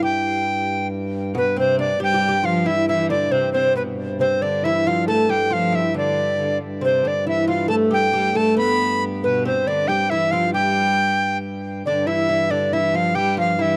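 A dry, close studio sound in a 1970s style, lightly touched with reverb, frames this festive, ancient-feeling medieval dance in 6/8, cut from a longer piece. Up front, a bright, reedy tenor recorder carries the melody with an airy chiff and vibrato, its line trailed by tape echo. Beneath it, a plectrum-plucked oud with woody double strings plays a second line, while a hand-pumped harmonium holds a low, breathing drone throughout. At 1.3 seconds a clear viola da gamba joins with another second line, its bowed gut-string tone biting and ringing, also carrying tape echo. The music turns to a new section at 11.9 seconds and runs on to 13.8 seconds.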